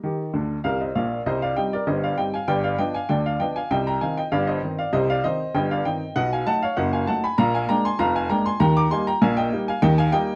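A woody, up-front upright piano plays alone in this cheerful, lively ragtime excerpt, moving at 98 BPM in a straight 2/4 in E-flat major and ranging from deep bass notes to bright high tones. A piano fill runs from 0.3 to 1.3 s before the music moves into a new passage that turns through C minor, G7, B7 and B-flat7 before settling back home on E-flat. A moderate studio reverb gives the piano some room, and the production is dark and warm.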